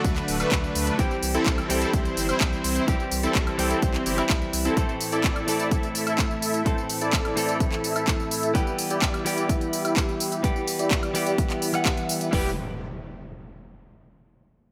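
Huge, detuned supersaw chords carry a low-pass filter sweep and tape echo through this euphoric, emotional festival progressive house excerpt at 127 BPM in E minor. They move over D, C, Am and Em alongside a clean, picked, direct-recorded electric guitar with its own tape echo, a deep, saturated sine sub bass that drops out at 4.7 s, and two layers of overdriven house drums (punchy kick, hi-hats, handclaps, tambourine and woodblock) with bright hats. The guitar, supersaws and sub bass pump to the sidechain until an up-front electronic impact lands at 12.5 s.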